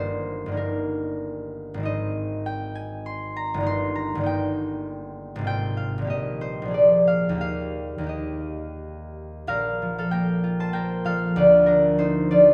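In a flexible, rubato 3/4 that moves between 84 and 101 BPM, this graceful, serene classical fragment features a solo concert harp, fingerpicked and ringing, placed up front with a warm acoustic tone across a range from G1 to C6. It opens in Eb major, with chords settling onto Eb around 7.4 seconds before shifting toward Bb major at 9.5 seconds. A moderate recital-hall reverb surrounds the instrument.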